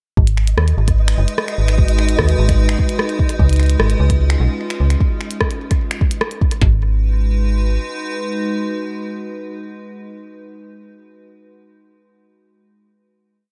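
Opening at 0.2 seconds with a deep, broken kick-and-snare pattern and a dark, metallic FM bass line in a dub style with tube saturation, this glitchy, intricate IDM piece in G# dorian at 149 BPM adds a second kit of clicky hats, finger snaps and rim clicks through a delay, a faint grainy granular flicker holding a high note, and an icy, crystalline pad with chorus, reverb and sidechain pumping that moves from G#m7 to C#7 before sustaining a final G#m7 chord from 6.6 seconds.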